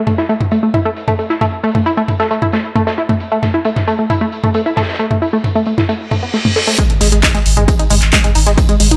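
A straight 4/4 pulse at 134 BPM drives this intense, hypnotic peak-time techno cut, where a tight, detuned sawtooth-and-square synth riff with chorus, overdrive, delay and sidechain pumping sits up front over a punchy analog drum machine of handclaps, hi-hats and toms and a gritty, big-room, low-tuned acoustic kit of hi-hat and fat snare, until a reverse cymbal from 6.1 seconds leads into a drop at 6.8 seconds where a heavy, layered electronic kick, an impact and a deep, thick, saturated sine sub bass from 7.0 seconds arrive under light reverb.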